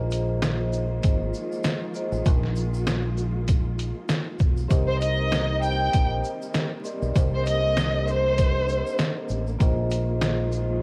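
A 98 BPM boom-bap hip-hop groove in 4/4 with a light 16th-note swing rides on a gritty, pitched-down sampler-style drum kit with a thumpy kick and medium-tuned snare, while a round, dark fingered electric bass sits up front and a grainy tube shaker stays distant in the background. Moody and reflective, this short excerpt drifts between Bb7sus4 and Cm7 as a ringing vibraphone with slow motor vibrato accompanies and a lush string section with expressive portamento holds sustained chords, both filtered. From 4.9 to 9.0 seconds a rich, focused violin section carries the melody through analog delay, all wrapped in a small room's ambience, a home cassette recording's warmth and vinyl crackle.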